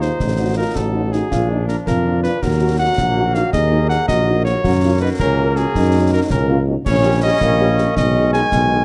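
A mellow solo cornet carries the melody up front, its light vibrato and smooth top leading this stern, martial wind-band march in a straight 6/8. Beneath it, a solo tuba sits just as far forward with a mellow bass and light vibrato, while a warm euphonium sings a second line from a more distant, roomy position. A very quiet, tight French horn section fills in soft accompaniment, and a clear trombone section with a vintage edge holds sustained chords. Concert snare drum, concert bass drum and clash cymbals keep the military character close and dry, the cymbals bright against the brass. The brief excerpt moves through dark, dramatic harmony, from a diminished chord through minor and dominant colours, all in classical style with light reverb and detailed, intimate sound.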